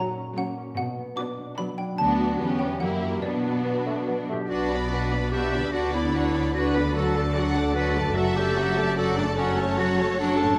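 Drenched in the reverb of a scoring stage, this mischievous, sneaky cinematic cue in B minor moves at 148 BPM in a playful, whimsical 3/4 and is cut from a longer piece. A woody, sharp xylophone up front carries the melody for the first 4.2 seconds alongside a rich, expressive violin section in the background, while a second, distant violin section, a lush viola section and a ringing, thumb-plucked harp playing arpeggios fill out the texture, and a focused cello section takes the bass from 0.8 seconds. A mellow bassoon adds a brief accompaniment before a clear, roomy clarinet takes up a second line and a smooth-topped double bass section joins the bass at 4.5 seconds, as the harmony moves toward D.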